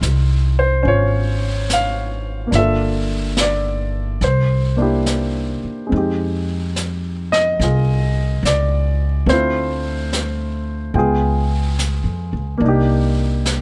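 This jazz ballad section, cut from a longer piece, moves on gently swung eighths with an intimate, melancholic mood, its extended chords drifting from Dbmaj7 through Db7#11 to a closing Cm9. A natural-sounding baby grand piano with short sustain carries the accompaniment up front, while a woody, growly pizzicato upright bass sits equally close, and a brush kit of snare and hi-hat stays quieter in its small-room setting. The dry, closely miked sound brings out fine detail in every touch.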